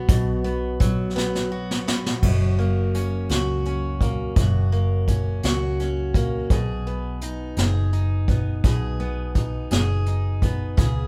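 A heartfelt, romantic six-eight pop ballad, cut from a longer piece, played by a band live in one room with light reverb. A warm picked steel-string acoustic guitar carries the accompaniment over a round, punchy, foam-muted vintage electric bass, while an up-front jazz brush kit with dark cymbals and a boomy kick plays a fill from 1.2 to 2.2 seconds. The chords move from B5 to F# at 2.2 seconds and on to B6 at 6.5 seconds.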